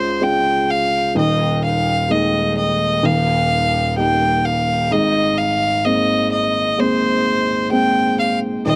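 Hopeful and tender, this short pop excerpt moves at a slow 64 BPM in Ab major, with a reedy, gut-string violin carrying the melody in a period style with light vibrato and a touch of tape echo. An upright piano with a dark, woody tone and audible action noise supports it through a Db, Ebsus4 and Eb progression that settles on Abadd9 at 4.9 seconds. Both instruments sit up front in a dry, close 1970s-style studio sound with light reverb.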